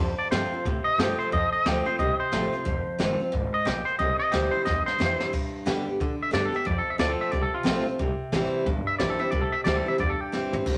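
Swung eighths at 180 BPM drive this retro, rollicking rockabilly excerpt in C mixolydian, where a clean, twangy electric guitar carries the melody through spring reverb over a bright, full-bodied picked steel-string acoustic and a woody, thumpy pizzicato upright bass, while a brushed drum kit with dark cymbals, a high-tuned snare and a boomy kick enters at 0.3 s and plays fills at 4.7 and 10.3 s, all set in a moderate studio reverb as the chords move from F through Fm7 to C and G.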